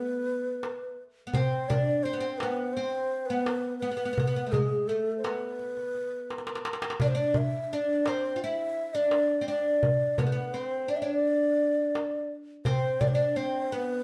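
Longing and hypnotic, this short cut from an Arabic maqam ensemble piece moves in a straight four, with a breathy, mellow low ney carrying the melody, its vibrato and soft attack heard close and up front. Beneath it a bright, woody fretless oud plucked with a plectrum traces a deep second line on double strings, while a crisp, compressed metal-shell darbuka struck with hard hands enters at 0.6 seconds and drops in a fill around 6.3 seconds. The ensemble plays live together in one room, wrapped in a wet studio reverb.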